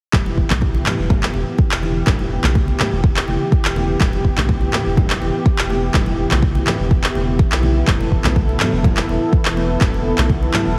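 Hypnotic and warm, this short afro house cut moves at 124 BPM in a straight 4/4, resting on a single E minor chord throughout. A deep electronic kick drum sits at the front of the mix, joined by produced electronic handclaps, both carrying a small room ambience. Bright acoustic congas sit distant in the background, sounding as if heard from a large room. Beneath them, a round analog bass holds the low register from E1 to B1, its dark, nasal tone given a fast attack and thickened with tube saturation. A detuned sawtooth pad sustains smooth chords between E3 and A4 with a soft attack, long release and chorus, and both the pad and bass breathe with sidechain pumping. The whole recording carries a heavily compressed, radio-like character. All parts enter at 0.1 seconds: the kick drops out at 10.4 seconds, the handclaps and congas at 10.6 seconds, and the pad and bass carry on until the fragment ends at 10.8 seconds.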